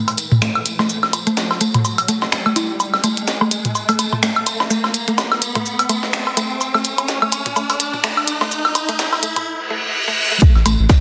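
A woody, mallet-like FM synth pluck spans A3 to E4 through chorus, pumping sidechain and digital delay over a cool, hypnotic minimal techno build-up at 126 BPM with 16th-note swing, alongside clicky up-front hi-hats and snaps, dub-echoed electronic woodblock and toms, a gritty sampler-style kit with hats, shaker and snare, a jingly tambourine, and a riser and reverse cymbal under a filter sweep, until a punchy, tape-warm kick lands at 10.4 seconds with a brief round, dark A1 bass in a lush hall reverb.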